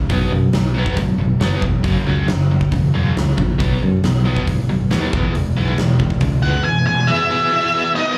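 An up-front, dark octave-fuzz lead guitar enters at 6.4 s over a confident, swaggering classic rock riff from two warm overdriven electric guitars, one compressed with tremolo and slapback echo and the other in the background. A round, direct picked bass and a huge arena drum kit with a punchy kick and pumping hall sound drive it, and a very quiet, bright tonewheel organ with key click and slow rotary speaker slips in at 6.8 s, the whole captured as a live gig through the venue's PA with club reverb in this short cut from a longer piece.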